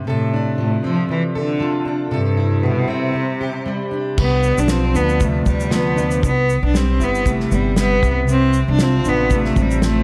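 Carefree and sunny, this acoustic pop excerpt with a gentle swing opens on a double-tracked, full-bodied jumbo steel-string guitar fingerpicking the accompaniment, joined almost at once by a rich, bowed cello melody with vibrato and a touch of analog delay, both sitting up front. At 4.2 seconds a woody, steel-strung pizzicato upright bass and a cloth-damped, thuddy drum kit with a tight kick, shaker, snare and dark crash cymbal come in, the drums also carrying analog delay. Light studio reverb gives the mix an echo-heavy character.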